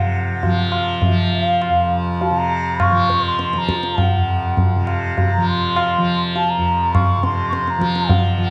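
Serene and meditative, this brief Hindustani classical excerpt in 7/4 gathers pace throughout as a pure, hollow bansuri with gentle vibrato floats distantly over a bright, buzzing, up-front tanpura drone, joined at 0.4 seconds by low-tuned, ringing tabla, all bathed in a moderate echo-chamber reverb.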